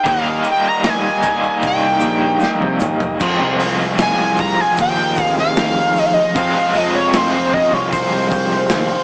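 Psychedelic rock in F minor at a slow 76 BPM, this short cut from a longer piece has a hypnotic, trippy pull. A shimmering, nasal pulse-width lead sits up front with the melody, its tone colored by vibrato, chorus and tape echo, while a raw garage guitar plays a bright, overdriven, double-tracked riff with tremolo. Beneath them, a fuzz-soaked picked electric bass adds a round, punchy low end, and a very quiet combo organ holds reedy, vintage chords. A gritty, saturated breakbeat kit with dark cymbals and a punchy kick drives the groove, with a grainy egg shaker tucked in the background. The harmony moves from Eb to F minor at 3.2 seconds, just after a drum fill that starts at 2.4 seconds, and the whole mix carries light reverb, small-room ambience and a small-speaker character.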